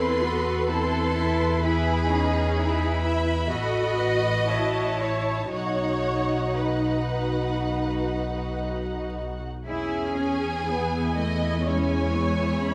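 From the first moment a full string orchestra sounds together in a serene, slow romantic classical passage in E major, drifting with rubato at about 56-65 BPM, where a distant, focused violin section carries the vibrato-laden melody above a second violin line, smooth violas fill the middle, and close, even cellos join up-front double basses to anchor a rich low end, all set in a scoring-stage reverb with a bed of vinyl crackle as the harmony moves through Am/E and A before coming to rest on E at 9.7 seconds.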